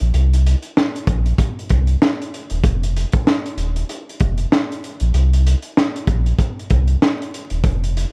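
A sub bass with an octave layer and a crunchy breakbeat drum kit open together and play throughout this dark, moody boom-bap hip-hop excerpt at 96 BPM in 4/4, with a 60% swing on the sixteenths. The bass is deep and full, with sine and triangle tones, a fast attack and sustained notes, while the saturated, gritty kit pairs a punchy kick and high-tuned snare with hi-hat under a rolled-off top, both parts sitting up front. The dry production is dark and warm, dusted with vinyl crackle.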